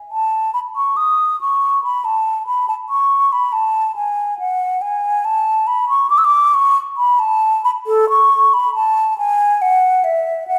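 A lone concert flute, pure, mellow and hollow with vibrato and a soft attack, sits up front in a serene, radiant baroque-style classical fantasia at a rubato 70 BPM in 3/4, ranging from A4 to E6 and settling into A major from 5.3 s, while a wet recital-hall reverb in a church or concert hall blooms around this short fragment of a longer piece.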